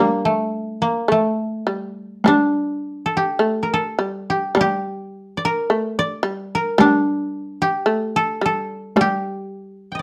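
A dark, moderately reverberant studio sound frames this solitary, austere fragment of traditional Japanese chamber music in a rubato feel, where a mellow, woody koto played with fingerpicks carries the melody up front above a powerful, buzzing, plectrum-plucked fretless shamisen second line, while a taiko ensemble struck with heavy sticks sits in the background from 2.2 to 9.2 seconds.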